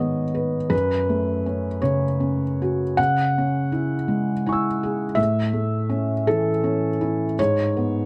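A close, detailed recording with little reverb places a felt-muted upright piano up front, its tone soft and mellow, with the mechanical noise of the action plainly audible. This short excerpt of neoclassical minimalist piano sits in a reflective, melancholic mood, moving in 6/8 with a rubato feel. The piano plays alone for the full 8.1 seconds, spanning from F#2 up to E6. Its harmony drifts through G#m, F#m, C#m and A before settling back on G#m at 7.4 seconds. The muted felt and close placement give the playing an intimate, private quality, as if heard from the piano bench.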